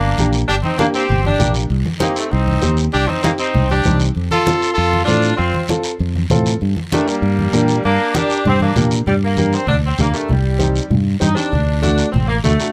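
Dry and closely miked, this danceable, passionate cumbia fragment sets a warm saxophone section on the melody against a bright, scooping trumpet line that drops out at 8.9 s, while round, punchy fingered electric bass, woody upright piano, thick-skinned congas and a raspy guiro drive it as the harmony turns toward harmonic minor at 9.1 s.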